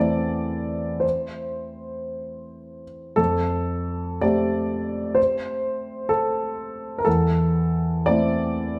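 Neoclassical minimalist piano excerpt in 6/8, intimate and tender, where a lone dark grand piano, mellow and up front with audible action noise, moves with rubato at roughly 55-65 BPM in F major, shifting from Am/E to Fadd9 at 3.2 seconds and back to Am/E at 7.1 seconds, all within a wet stone room whose reverb lingers for about 1.1 seconds.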